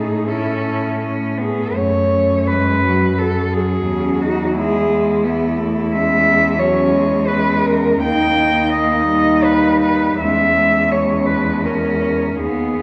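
An elegiac, melancholic classical passage for four muted cellos, each played by a single bowed player, unfolds in a rubato three-beat lilt, the melody cello singing up front with light vibrato, soft attacks and portamento over a veiled second line and a dark, distant accompaniment. Beneath them the bass cello, also up front, adds fuller vibrato and gentle slides, while the harmony drifts from A through F#m and C#m/E to D# before returning to C#m/E. A wet concert hall reverb, lingering about 1.7 seconds, surrounds this 12.8-second excerpt cut from a longer piece.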